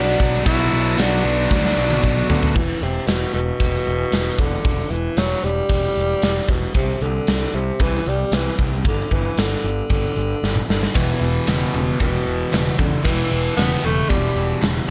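A straight 4/4 pulse at 114 BPM drives this gritty classic rock cut in E minor, led by a gated 80s drum kit up front in a stone room with a punchy kick, a raspy tenor saxophone carrying the melody with slapback echo, scooped notes and light vibrato, and a fuzz-laden picked electric bass underneath. A tight distorted guitar, a very quiet hollow-body overdriven semi-hollow guitar and a boxy picked swing-style acoustic guitar with finger squeak play at the opening, drop out around 2.5 s and return around 11.0 s, when a double-tracked cranked stack guitar with phaser joins the riff. Drum fills mark both turns, the first ending at 2.6 s, as the chords move from Bm to Em, Cadd9 and G5.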